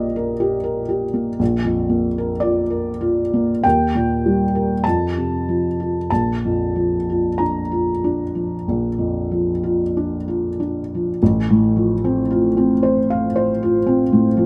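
Set in a moderate stone-room reverb, this serene, tender excerpt from a romantic classical nocturne in Bb major features a solo felt-muted upright piano, mellow and intimate with audible action noise and placed up front, moving in rubato at 45-62 BPM before shifting to a new passage at 11.2 s.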